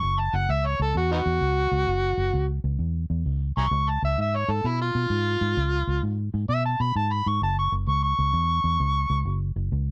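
A gritty, overdriven harmonica and a dark, round, foam-muted electric bass open this laid-back, soulful electric blues shuffle at 130 BPM, swinging in 4/4 over F#5 and C#7 chords. The amplified harmonica carries the solo up front with vibrato, scooped notes, tongue slaps and a jazz-inflected touch, ending at 9.4 seconds. The punchy vintage bass holds the low end until 9.9 seconds, all set in light reverb in this excerpt cut from a longer piece.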